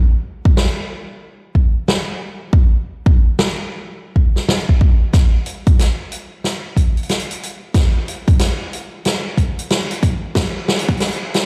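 Gritty and funky, this glitch hop cut swings its 16ths in 4/4, with a punchy, layered, tape-warm electronic kick drum arriving up front at 0.5 seconds and a natural, acoustic big-band kit with hi-hat and a medium-tuned snare joining at 0.6 seconds. From 5.1 seconds a build-up takes hold, combining a drum fill with a filter sweep. The sound carries a light stone-room reverb and a high-pass filter, like playback on a big sound system in a bare room.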